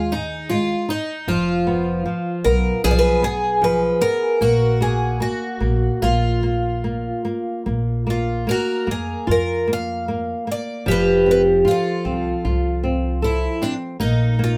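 A fado-style ballad in 4/4 at 76 BPM, played rubato with a longing, mournful mood, this short passage is cut from a longer piece. Two picked twelve-string acoustic guitars sit up front with a shimmering, octave-doubled sound. The archtop carries the melody with a warm tone, while the concert instrument adds a brighter second line beneath it. A fingerpicked flamenco guitar supplies the accompaniment, and a pizzicato upright bass on gut strings gives a woody, dark, thumpy low end. All four parts play together from 0.0 to 14.6 seconds, moving through chords such as Fdim, Gbadd9/Bb and F. The band sounds as if it is playing live in one room, with light reverb.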